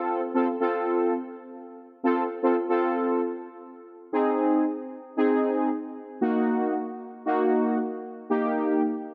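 An analog synth brass carries this pop fragment entirely on its own, its fat, sawtooth-edged tone sitting up front with a fast attack, sustained notes and a filter sweep coloring the sound. Chorus thickens the patch, and its dark, bold character keeps the brassy voice full through a range from Bb3 to A4. The tempo is a steady 115 BPM in a straight 4/4, and the mood balances wistful and upbeat. Harmony moves from F to Ab at 4.1 seconds, then to Ebm and finally Eb, with a new section beginning at that same point. A moderate, lush hall reverb with a 2.5 second tail surrounds the synth, lending the short cut from a longer piece a spacious glow.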